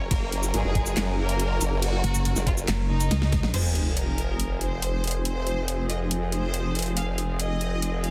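Heavy, menacing wobble dubstep at 140 BPM in a half-time feel, this clip from a longer piece opens on a drop where a saturated, detuned formant-sweep wobble bass sits up front under a lush, distant violin melody with tape echo and floating string chords that pump against the sidechain, while a dubstep drum kit with a huge snare and bright hats plays alongside a knocking electronic kick, a dark pulsing pluck wobble bass surges in at 2.0 seconds, and after a drum fill and band accent the kick stops as a sub drop hits at 3.5 seconds and a filter sweep rolls across the strings into a new section, all set in light digital ambience within a dense, heavily limited master.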